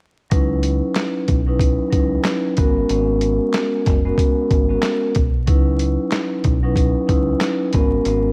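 Boom-bap hip-hop at 93 BPM with a swung sixteenth-note feel, dark and reflective in C# dorian, this short cut from a longer piece moves between C#m11 and G#m11 chords. A mellow, ringing vibraphone played with soft mallets sits up front, filtered and tape-colored, over a round, dark fingered electric bass. A gritty, compressed sampler-style kit with a thumpy kick, medium-tuned snare, hi-hat and handclaps punches forward, all within a worn digital ambience of warbling old tape and vinyl crackle.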